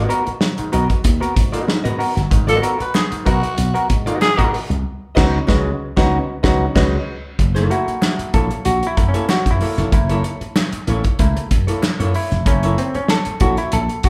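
A mellow, stringy clav sits up front in this gritty, playful funk clip at 95 BPM in F# mixolydian, taking a solo from 7.4 s over a bright, punchy slap bass with a growly envelope filter, a soul drum kit with a tight kick and rolled-off top, and a dark, clean hollow-body archtop guitar underneath. A raspy, growling tenor saxophone adds a brief second line between 2.5 and 4.5 s, and distant hollow handclaps sit in the background. The chords move from G#m9 to C#9sus4 and then F#7#9, and the band hits an accent from 4.9 to 7.4 s over the C#9sus4. The group plays live in one room, bathed in a large studio reverb.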